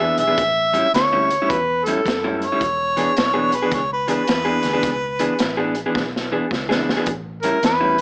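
A small-speaker sound in a moderate club reverb frames this gritty, laid-back electric blues shuffle at 108 BPM in E mixolydian, where a mellow, overdriven harmonica with tongue slaps and scooped notes opens the melody, a punchy second harmonica with tape echo takes over from 2.4 to 5.7 seconds, a dark, slightly broken-up guitar through a small old amp drives the riff, a round, foam-muted bass sits low, and a saturated breakbeat kit with a tight kick plays a fill from 6.0 seconds before the first harmonica returns at 7.4 seconds.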